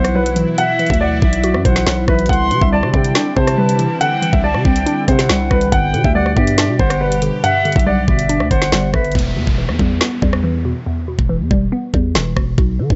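This is a tense, menacing drill track in a half-time feel, cut from a longer piece. An intimate concert grand piano carries the melody, its tone softened by a low-pass filter and trailed by delay, with audible action noise. A distant, airy concert flute with vibrato plays a second line above it, also under delay. Beneath them, a crystalline wavetable pluck with chorus and a detuned sawtooth pad with a filter swell and a moving notch fill out the harmony. A growling, buzzy 808-style bass and an up-front electronic kit with a knocking kick, woody snare and metallic hats drive the groove. At 9.2 seconds the piano, flute and pad drop out for a break, leaving the pluck, bass and drums while an electronic downlifter sinks in, all in a dry mix.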